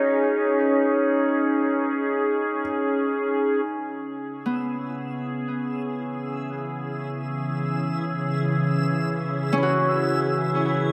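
Melancholic and spacious, this free-time ambient fragment in C# minor opens with a muted, boxy felt piano melody on C#5 that ends at 2.6 seconds amid dub echo, while a morphing, warbling wavetable pad up front holds chords from G#sus4 to C#m and fades in from 3.7 seconds, a ringing fingerpicked Celtic harp arpeggiates with echo throughout, and a reversed, granular, detuned texture enters at 4.5 seconds, all bathed in a wet spring reverb.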